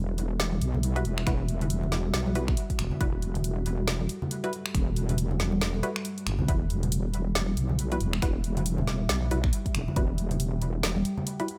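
Deep dubstep at 138 BPM in E minor, this brooding, dark clip moves with a half-time, swung feel over a single Emadd9 chord. Up front, a heavy, wobbling sawtooth bass with detuned unison voices and chorus sits low, saturated and compressed, while a deep, moody ambient pad sustains chords in the background, its slow attack and long release softened by chorus and built-in reverb. A filtered dub chord stab adds muted, detuned plucks with a fast attack and short decay, trailed by dub echo. The deep house kit brings finger snaps, a woody snare and dark hi-hats, joined by bright, thin-skinned congas with soft hands, set back and sent through dub echo. A layered electronic kick drum enters at 1.3 seconds and drops out between 5.6 and 6.5 seconds, in a close, dry mix taken from a longer piece.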